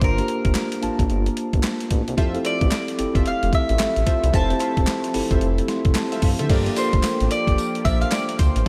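A confident, bouncy new jack swing R&B excerpt opens with a gritty, pitched-down sampler drum kit up front, a gliding sawtooth synth bass, a mellow tine electric piano with slapback echo over Gm9, and a round, picked mandolin melody with tape echo, joined by very quiet crisp group handclaps from 0.6 seconds, then a lush wave-folded pad and punchy detuned polysynth stabs sitting in the background from 2.2 seconds as the chords move to Fmaj7, with an electric piano fill leading into a closing Gm7.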